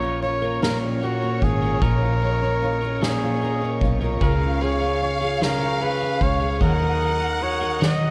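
A six-eight pop ballad in 6/8 at 50 BPM, this aching, melancholic excerpt sets a clear, close-miked flugelhorn melody with scooped notes up front, trailed by slapback echo, over a distant, lush violin section with vibrato, a full-bodied double-tracked fingerpicked jumbo acoustic guitar, bright, twangy twelve-string electric guitar arpeggios in the background, a very quiet flute-like tonewheel organ with key click and slow rotary speaker, a round, foam-muted fingered bass, and a roomy soft-mallet drum kit with dark cymbals entering at 0.2 seconds, all moving through Bbm, Db and Ebm inside a big arena sound with lush hall reverb.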